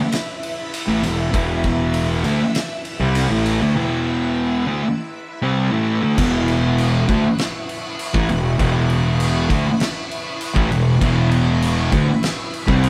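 At 99 BPM in a straight 4/4, this hypnotic, brooding stoner and doom metal excerpt opens on a shimmering, vintage string machine holding slow-attack violin chords over Em, joined at once by an oversized low-tuned drum kit with a fat snare, punchy kick and dark cymbals in a pumping stone room, before two thick fuzz guitars, one dark and up front, the other in the background, enter with the riff and a growly overdriven fingered bass at 0.9 seconds, the band settling onto E5 at 6.2 seconds as if playing live in one room.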